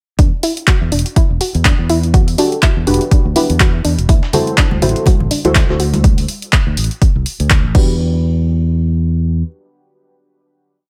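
An overdriven, punchy four-on-the-floor kick drives this late-night deep house piece at 123 BPM in E minor, joined by a dry analog drum machine's hats, claps and crash, a round, syncopated fingered electric bass riff pumping beneath, a soft pluck arpeggio looping six steps against the bar with chorus and dub echo, and dark, detuned chord stabs with phaser entering at 2.4 s. From 4.1 s a very quiet, gritty sampler-style breakbeat sits in the background, joined by bright congas at 4.3 s, both fading out at 6.0 s before the piece closes on a final hit.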